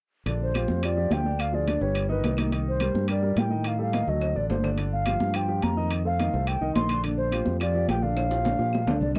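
Danceable and sophisticated, this short cut from a longer Afro-Cuban jazz piece moves at a brisk 213 BPM in a straight 4/4, set in Bb major. A breathy, mellow concert flute carries the melody up front, its vibrato and crisp attack giving the line an expressive voice with softened highs. Beneath it, a growly, bright fingered electric bass sits forward in the mix, while a concert grand piano supplies intimate, naturally sustained chords, its action noise audible and its low end deep. Congas with thick, high-tuned skins sit in the background under soft hands, ringing metal-shell timbales add a compressed, saturated edge, drum fills arrive at 4.2 and 8.2 seconds, and woody claves tick quietly from a small room. The harmony moves through rich colours such as Bb69, Cm9, F13b9 and Gm7 before settling on Bb6, all captured in a dry, close studio sound with a 1970s character.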